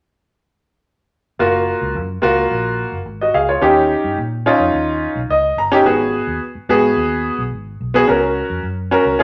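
A wet studio reverb with a short decay of 0.8 seconds wraps this brief clip, cut from a longer piece, in a lively room sound. It is uptempo 1960s-style soul in F# major, moving at 108 BPM in a straight 4/4, with a joyful, danceable mood. A bright grand piano carries the accompaniment up front, its tone brilliant yet a little worn, and it adds a short fill from 5.0 to 5.8 seconds. Beneath it, a vintage fingered electric bass sits much lower in the mix, its foam-muted, round and punchy tone giving a dark, amped foundation. Both parts play from 1.4 to 9.2 seconds through a single section, as the harmony moves from F#maj7 to D#7, then G#m7, and settles on F#/C#.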